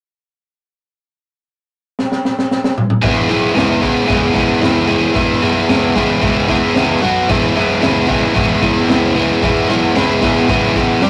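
Rowdy and swaggering, this garage rock excerpt in E major at 113 BPM opens with a crunchy, gritty breakbeat drum kit, its punchy kick, high-tuned snare and toms rolling through a fill at 2.0 seconds, before a biting, double-tracked overdriven guitar riff enters up front at 3.0 seconds over a round, fuzzed fingered electric bass sitting dark in the background, all captured in a rough rehearsal-room recording with wet small room reverb and warm saturation.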